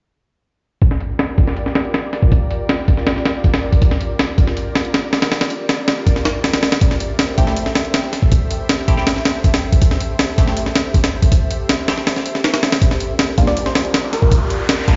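A gritty, pitched-up breakbeat kit sits up front from 0.8 seconds, with a thumpy kick, medium-tuned snare and filtered hats carrying a compressed, tape-warm sampler character as a filter sweep runs across it in this dark, atmospheric drum and bass and jungle piece at 160 BPM in G dorian. An ethereal, airy pad of detuned sawtooth and triangle tones holds mellow chords moving from Gm7 to Am7 and back, while a nasal, band-passed chord stab with phaser and dub echo joins in the background at 7.4 seconds. In the closing build-up, filter sweeps move across the pad and stab, a round, keys-like FM lead with vibrato offers a brief phrase, and an electronic riser enters at 13.6 seconds, all within a large studio reverb in a dark-toned, bare-room mix.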